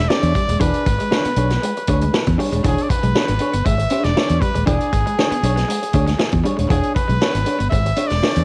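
A straight 118 BPM funk groove in 4/4 struts through E mixolydian on an E6 chord, with a vintage drum kit playing hi-hat, punchy kick and medium-tuned snare from 0.1 seconds, a fingered electric bass sitting up front, a compressed clean electric guitar comping, a twangy, slightly broken-up guitar riff in the background, and a brilliant, close-miked trumpet carrying the melody with tape echo, all in a gritty home-cassette sound with a small room's light reverb, cut from a longer piece.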